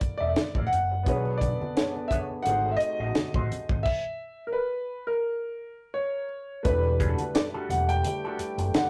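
A swung 86 BPM groove in 4/4 drives this bittersweet, cinematic 1970s-style soul excerpt: a tight funk kit with a high-tuned snare sits up front over amped fretless bass, an intimate grand piano with audible action noise carries both melody and accompaniment, a slightly broken-up wah guitar riff comes through a small old amp, bright low-tuned congas sit in the background, a mellow French horn section holds chords from 1.1 seconds, and a stop runs from 3.9 to 6.7 seconds, captured in a rough rehearsal-room sound with tube saturation.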